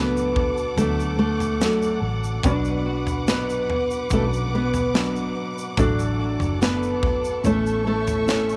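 A fingerpicked nylon-string guitar carries the melody up front from the first moment, its classical tone marked by audible finger squeak, while a second, very quiet nylon-string guitar plays arpeggios beneath it. Alongside them, a felt-muted upright piano offers soft, intimate accompaniment in the background with short sustain and a thick, mellow character, and a dark, foam-muted electric bass provides a round, amped low end. A dark string section holds lush, bowed chords with expressive vibrato and a smooth top. A grainy, bright egg shaker joins at 0.2 seconds, followed at 0.4 seconds by a polished, airy acoustic drum kit with a punchy kick, a medium-tuned snare and toms. This 72 BPM, straight pop ballad excerpt feels emotional and hopeful, moving through D, Bm and A chords in light reverb with small room ambience.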